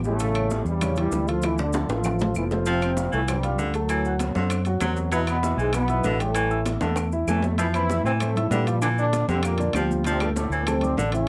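A bright, tight trombone section with vibrato carries the melody in this fiery, passionate salsa excerpt in D minor at 195 BPM, over a dark grand piano with audible action noise and long sustain, a round, up-front fingered electric bass, ringing metal-shell timbales, distant high-tuned congas, very quiet low-tuned bongos, grainy maracas and woody claves, while a clear, roomy baritone saxophone enters at 2.7 seconds as a second line.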